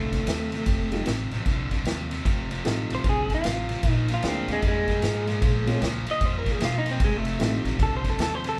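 A clean electric guitar played through a small old amp leads up front, soloing across this 8.6-second cut from a longer electric blues shuffle with picked lines that sound dark, slightly broken-up, lo-fi and compressed, touched with slapback echo. Beneath it, a cranked stack guitar plays a bright, overdriven picked riff low in its range, while an upright bass plucks thumpy gut-string notes with a woody tone. A vintage drum kit of kick, snare and ride sits close, with a punchy kick, dark cymbals and a rolled-off top in a small, pumping room. From 0.9 s to 8.0 s a mellow upright piano adds intimate, slightly detuned accompaniment, its action noise audible. Playing live in one room at 152 BPM in a swung 4/4 in F mixolydian, the band moves from F9 to Bb9 and Bbm7 before returning to F9, with a swaggering, soulful mood.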